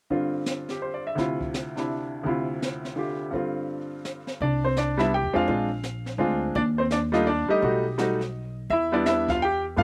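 A bright upright piano and a brushed jazz drum kit open this short excerpt of a swinging jazz piano trio, moving at 168 BPM in a lilting 3/4 with a swing on the eighth notes in C major. The piano carries the melody up front, its brilliant, woody tone and short sustain ringing across a span from D2 to G5 over harmonies that begin on G7sus4 and Dm9. Sitting lower in the mix, the drums bring a dark, smooth brushed snare, hi-hat, a high-tuned snare and a boomy kick with the feel of a small room. At 4.4 seconds the pizzicato upright bass joins with a woody, warm, steel-strung sound between Bb1 and G2, as the chords move through Cadd9, Bb7, Ebmaj7#11 and B7b13 before arriving at Em7. The recording is dry, with little reverb, giving the trio a warm feel.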